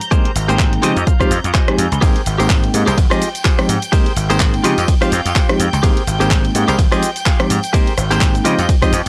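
Filtered disco house at 126 BPM in Ab major, funky and feel-good, cut from a longer piece, with a swung 16th-note groove where a punchy, tape-warm electronic kick sits up front beside an overdriven, bright slap bass that enters at 0.4 seconds, while a house kit of handclaps, hi-hat, ride, rim click and shaker pumps against the sidechain and a very quiet tambourine joins at 2.0 seconds. A bright, bell-like tine electric piano with phaser carries the accompaniment over Abmaj9, Dbmaj9#11 and Fm9/Ab changes, a twangy, compressed clean guitar plays a picked riff with fills at 0.6 and 4.9 seconds, and a rich, vibrato-laden string section with 12-bit sampler grit holds sustained chords high in the background. The sound is dry and gritty, like a hardware recording with cassette tape character and digital ambience.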